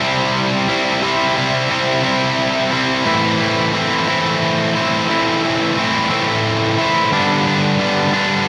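Soaring and cinematic, this brief rock excerpt moves at 59 BPM in a straight 6/8, counted in dotted quarters. A single distorted electric guitar carries it alone from start to finish, picked and double-tracked, sitting up front with a bright, overdriven edge and a slapback echo. Its line spans from G2 to E4 as the harmony moves from C to A minor at 3.1 seconds and on to G at 7.1 seconds. A lush hall reverb with a 1.9-second tail wraps the sound in a digital ambience, giving it a big arena scale. The passage is cut from a longer piece and ends at 8.5 seconds.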